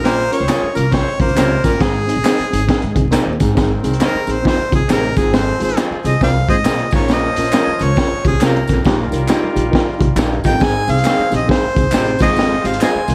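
Uptempo 1960s-style soul in Ab major at 136 BPM with a swung 4/4 feel, this uplifting, danceable excerpt is led by an up-front harmonica full of vibrato, tongue slaps and scooped notes, which takes a jazz-style solo from 3.6 seconds. Underneath, a gritty, saturated breakbeat kit with a punchy kick, high-tuned snare and dark cymbals drives alongside a woody, thumpy pizzicato upright bass, while a baritone saxophone riff, a tight, punchy horn section, a reedy electric piano with fast tremolo, twangy guitar stabs through a small old amp, and tambourine, shaker and group handclaps sit in the background. The small room ambience and vinyl crackle give the whole a vintage, lo-fi character, with plate reverb on the harmonica, horns, piano and guitar and analog delay on the harmonica.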